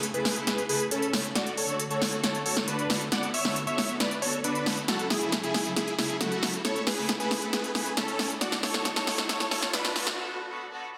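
A big, detuned supersaw lead carries a bittersweet, soaring melody from the start, bright and up front under phaser and digital delay, while a filter sweep runs across it through this uplifting trance build-up cut from a longer piece. Alongside it, a chamber string section holds sustained chords with a reedy gut-string tone, and a punchy big-room drum kit of crisp hats and snare plays a fill until 10.2 seconds, joined by a very quiet electronic riser from 7.5 seconds. The chords move from A through D, Bm7 and F#m7 in a lush hall reverb, and the strings sustain alone through the brief break that closes the passage at 11.0 seconds, all under a dense, heavily limited modern master.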